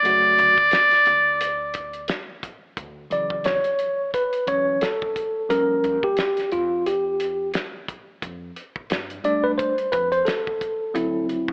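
Warm yet cool swung jazz-hop opens on a brief, buzzy, breathy metal-muted trumpet line over the electric piano that ends at 2.1 seconds; the bright, bell-like tine electric piano then solos from 2.8 seconds over jazzy extended chords, backed by a cloth-damped, thuddy drum kit with a fat snare and tight kick and a woody pizzicato upright bass, with the mix set in moderate echo-chamber reverb and a lo-fi AM radio tone in this fragment of a longer piece.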